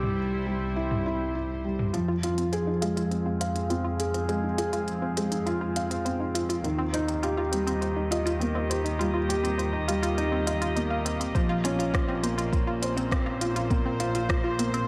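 Hypnotic and moving, this piano and strings electronica piece in F minor at 102 BPM sets an up-front, felt-muted upright piano riff with tape echo over distant, reedy gut-string chords and a dark, woody bowed double bass section with sidechain pumping, while crisp hats, rim clicks and toms from an organic electronic kit sit beneath; a round, detuned analog pluck arpeggio enters at 1.9 s as filter sweeps on it and the strings drive a build-up, and a deep electronic kick joins at 11.3 s, the whole placed in a concert hall reverb.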